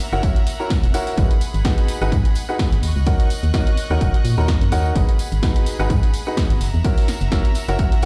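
Piano house at 127 BPM in G# minor, this energetic, soulful passage is cut from a longer piece and rides a 4/4 groove with a light swing on the sixteenths. A bright, brilliant baby grand piano carries the riff, pumping against the kick and trailing a dub echo, over a progression that moves through F#7, G#m7 and D#m7. Beneath it, a hollow, organ-like FM bass with a fast, percussive attack sits dark and up front, also pumping with the kick. A punchy, tape-warm electronic kick anchors the beat from 0.2 seconds, joined by an analog drum machine supplying hi-hat and snare, while a tambourine with shaker and handclap colour stays in the background. A clear chamber violin section holds sustained chords with light vibrato and an earthy, biting edge, breathing with the same sidechain pulse, and the whole mix sounds as if played on a big system in a bare stone room.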